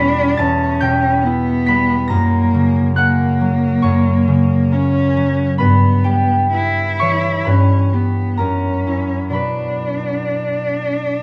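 Close, detailed microphones capture this romantic classical duo in a moderate recital hall reverb, with both instruments up front. A single bowed cello carries a yearning, elegiac melody with expressive vibrato and portamento, its warm tone slightly distant, while the concert harp supplies a fingerpicked, ringing accompaniment across a broad range. The rubato phrasing moves through chords from Em and F# toward F#7 and Bm, in a short passage cut from a longer piece.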